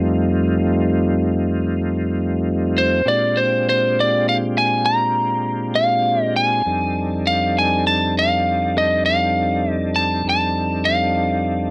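A lightly driven electric lead guitar, slightly broken-up and picked, carries the melody from the start over sustained tonewheel organ chords in this swaggering, gritty slow blues excerpt in 12/8 at 67 BPM, set in F mixolydian with a straight feel. The compressed guitar sits up front with a slapback echo, while the smooth, clean organ turns through a slow rotary speaker with chorus vibrato as the harmony moves from F9 to Bb13 at 3.1 seconds and on to F13 at 6.7 seconds. Light reverb colours a dry, close, 1970s-style studio sound across the 11.7-second fragment.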